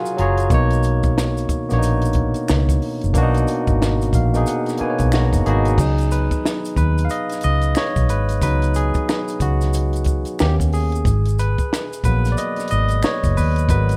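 Introspective and late-night in mood, this swung neo-soul and R&B excerpt has a loose, relaxed 16th-note lilt and the rough feel of a home demo with little reverb. A barky tine electric piano sits up front, bright and clean through a combo amp, adding short fills at the start and again from 3.8 seconds before taking a solo from 5.8 seconds to the end. Beneath it, a vintage muted fingered electric bass sounds round and foam-muted, dark and amped, and is placed prominently in the mix. A compact cocktail drum kit plays kick, high-tuned snare, hi-hat and crash, with a punchy low end and a smooth, rolled-off top. Maracas and finger snaps add a faint small-room shimmer in the background, while the harmony moves from F#maj9 and Bmaj9 through C#9sus4 and D#7b13 to G#m9.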